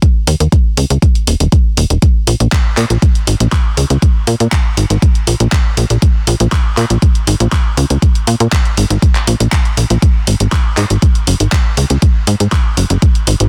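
An electronic kick drum, deep and up front, opens this euphoric, expansive progressive house excerpt together with overdriven pop drum kit handclaps and hi-hat, before a tight sequencer bass arrives at 0.3 seconds with punchy sawtooth and square-wave pluck, ring-modulated bite and sidechain pumping, all pressed into a dense, heavily limited modern master with little reverb.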